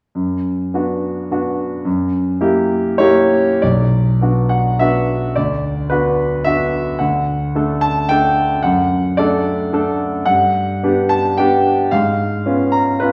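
Passionate and stormy, this romantic character piece for solo piano moves in 3/4 at 90-112 BPM with a flexible rubato feel, set in B minor and tuned to A4 = 437 Hz. A concert grand carries everything alone, spanning B1 to A#5 with a clear, open tone, a deep bass and an up-front presence. The opening phrase rests on a B minor chord over F# and an F#7b9, then a longer second passage begins at 3.6 seconds and travels through B minor, D major and a Gmaj7 before landing on C#7 over G# near 11.9 seconds. A recital hall reverb with a 1.4-second decay gives the piano a wet, spacious surround, as if heard from further back in the room. Cut from a longer piece, the recording stops at 13.1 seconds on that chord.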